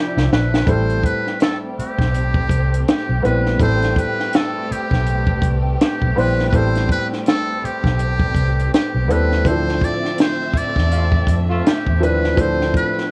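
A swung sixteenth-note groove in four sets the pace, with a compact cocktail kit, dry and up front with a high-tuned snare and punchy kick, opening on a short fill beneath a round, foam-muted electric bass that sits dark and prominent in the mix. This introspective, late-night neo-soul and R&B excerpt, cut from a longer piece, lays a woody upright piano with long sustain over that foundation, while a bowed studio string section holds sustained chords with expressive vibrato and portamento. A trumpet with a metal mute carries the jazz-style solo melody, its tone buzzy, thin and brilliant, with light vibrato, slapback echo and plate reverb. The harmony moves from Dm9 to Am9 and back to Dm9 at 9.4 seconds, where the band pushes a collective accent. Within that accent, a tight, clear horn section lands punchy stabs from 10.9 seconds, also treated with slapback echo and plate reverb. The whole recording carries a worn cassette character, with warbly pitch drift, faint mains hum and a light reverb.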